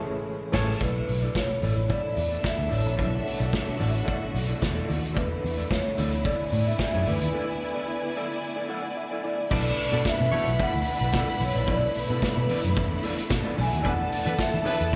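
This disco cut opens with a band accent over an Amaj7 chord: the reedy, overdriven electric piano with fast tremolo and a clear, lush bowed string section sound from 0.0 s before the rest of the band joins. At a driving, danceable 110 BPM in B dorian, a vintage drum kit with dark cymbals, a tight kick and a gritty, saturated tone sits up front beside a round, foam-muted picked bass, while very quiet, high-tuned congas ring close by. The vibraphone carries the melody with soft mallets and a slow motor vibrato, its metallic ring touched by slapback echo, and a dark, clean, fingered electric guitar adds accompaniment. A second string section, bowed sul tasto with a soft attack, plays an intimate second line above the sustained chords, and a tight horn section in the background punctuates with pop-style stabs. The harmony moves between Bm11 and E7sus4, and a break at 7.3 s leads into an electric piano fill before the second section begins at 9.5 s with a horn stab. 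The whole performance comes across as a live gig heard through a venue's PA in a recital hall, with lossy compression artefacts.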